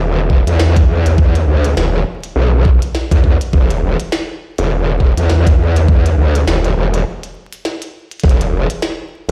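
Heard through a big sound system in a bare stone room, the recording carries a layer of vinyl crackle and only a touch of reverb. This short, gritty and swaggering glitch hop cut moves at 102 BPM in 4/4, with a 58% swing on the sixteenths. A growling, aggressive bass sits up front from the start, its sine tone pushed through a formant filter, distortion and chorus into a bright, wobbling, compressed snarl that sustains across the E1 to E2 range. An overdriven electronic kick enters at 0.3 seconds, layered and knocking. Just after, a glitchy electronic kit adds a tiny snare and clicky hi-hats, re-recorded in a small room and set well back in the mix. A break arrives at 7.1 seconds, and the kick drops out at 8.4 seconds, leaving the bass and kit to carry the close.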